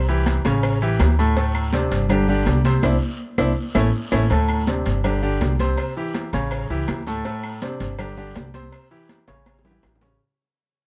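A thumpy, dark upright bass sits up front, played pizzicato on gut strings, anchoring this driving, danceable salsa, cut from a longer piece, at 163 BPM in 4/4. Beside it, a clear, present grand piano carries the accompaniment over a cycle of C, A7, D5 and G5 chords. The percussion is dense but set back: warm, high-tuned congas, ringing metal-shell timbales and agogo bells, woody claves, grainy maracas, a raspy guiro, and a very quiet pairing of round, low-tuned cowbell and bongos. A drum fill and a band accent arrive together at 2.8 seconds, the passage begins fading at 4.3 seconds, and another fill comes at 9.3 seconds before the cut. The sound is close and detailed, with little reverb.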